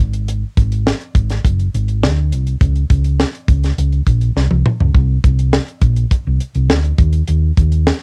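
Slick and nocturnal, this short cut from a longer piece sits in polished 1980s jazz-funk pop territory, moving at 103 BPM in a straight 4/4 and centered on C phrygian. A hollow-body short-scale electric bass, played with the fingers and amped, carries the low end from 0.0 to 7.9 seconds, ranging from F#1 to Eb2 with a dark, round, punchy tone placed up front. Alongside it, a tight acoustic funk kit of hi-hat, kick, snare and toms runs from 0.1 seconds, dry and equally forward, with a high-tuned snare and a firm, compact kick, its sound colored by cassette tape. A drum fill breaks in between 4.4 and 4.9 seconds. The whole passage forms a single section caught as a home recording on cassette, with a light reverb around the pair.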